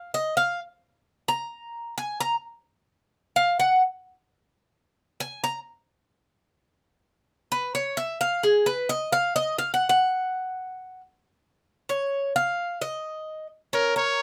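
Danceable and sultry, this Latin excerpt opens with a picked acoustic Cuban tres playing metallic, double-string arpeggios alone and up front until 13.7 seconds, when a bright, punchy trumpet with vibrato enters briefly with a pop-style melody just before the cut at 14.2 seconds, all captured close and in detail with light reverb.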